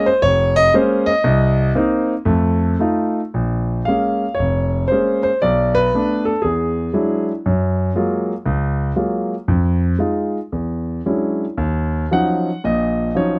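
Solo jazz piano in Bb minor, cool and late-night in mood, moving at 116 BPM in 4/4 with a swung, rubato feel across this 13.4-second excerpt cut from a longer piece. A warm concert grand carries everything alone, sitting up front with a deep, natural bass reaching down to F1 and climbing to Gb5, captured by close, detailed microphones in light reverb. The harmony drifts through minor sevenths and extended chords such as E9, Gbmaj9 and E13 before settling on Ebm9.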